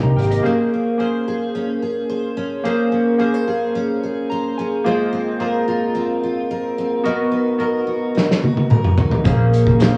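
Lo-fi cassette tone and small-room ambience frame this mellow, lonely bedroom-pop excerpt in Bb minor at 109 BPM, where a bright, picked steel-string acoustic guitar warbles through lush chorus over detuned analog keys that add a fill at 4.0 s, while a dark, round, muted electric bass and a loose indie drum kit with punchy kick and rolled-off top appear only in brief touches, the kit rolling into a fill at 8.2 s before the bass returns at 9.3 s.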